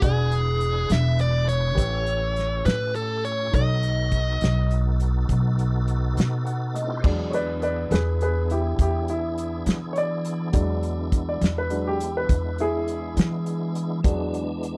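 This excerpt of laid-back, rollicking slow blues in 12/8 opens with a dark, smooth overdriven lead guitar singing the melody over piano, organ, upright bass and drums at 68 beats per minute, moving through E7, A7 and B7 in E mixolydian. The clear concert grand piano, with its deep bass and short sustain, comps beneath, while the tonewheel organ holds full, clean sustained chords through a slow rotary speaker and chorus vibrato. Up front, the woody pizzicato upright bass anchors the low end, and the soul drum kit brings a fat snare, tight kick, dark cymbals and a rolled-off top in a pumping room sound. The guitar drops out at 6.4 seconds, and a piano fill at 6.2 seconds leads into a piano solo from 7.0 seconds as the harmony returns to E7. The piano stops at 14.4 seconds, leaving organ, bass and drums to close the passage, all set in a dry, close space.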